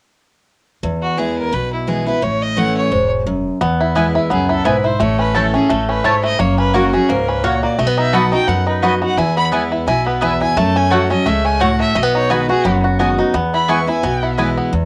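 Rustic and joyful, this bluegrass excerpt in E major swings along at 173 BPM, with a bright, full-bodied picked acoustic guitar up front and a woody, thumpy upright bass holding down the low end from 0.8 seconds. A biting, nasal fiddle carries the melody from 1.0 seconds, a twangy banjo played with fingerpicks joins it on melody at 3.6 seconds, and soon after a mellow, round mandolin adds stabs. The guitar, fiddle, banjo and mandolin carry a cassette-tape character, all set in moderate reverb on a home recording made on cassette.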